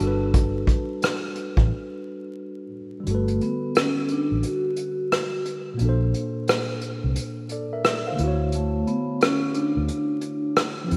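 Dreamy and cosy, this lo-fi hip hop excerpt opens with a clean, filtered tine electric piano, a dark, round, foam-muted fingered electric bass and a brush kit of hi-hat, punchy kick and rim click, all up front, with a break at 1.7 seconds. At 3.1 seconds the kick drops out and a mellow vibraphone played with soft mallets takes the melody, its metallic ring carrying slow motor vibrato, a low-pass filter and analog delay. Chords drift from Gmaj9 through Bbmaj9 to Dmaj9, set in a lush hall reverb with vinyl crackle and the rough feel of a home demo.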